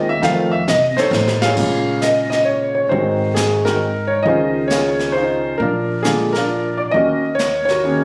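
A grand piano opens this late-night, swinging jazz trio in a solo passage. Its intimate, natural tone sits up front with deep bass, and the clatter of its action is audible. Beneath it, an upright bass plays pizzicato with a woody, steel-strung sound, while a brushed drum kit enters at 0.2 seconds with a medium-tuned snare, a boomy kick, hi-hat and crash cymbal. A drum fill from 1.1 seconds leads into a new section at 1.6 seconds, where the piano carries the melody over a progression in B-flat minor, moving from Bbm7 through Ab7 and Dbmaj9 to Bb7 and Ebm7. The tempo is 134 BPM in a lilting 3/4 with a swung eighth-note feel. Captured on a phone in the room and bathed in a moderate large-studio reverb, this fragment of a longer piece has a close-up candour.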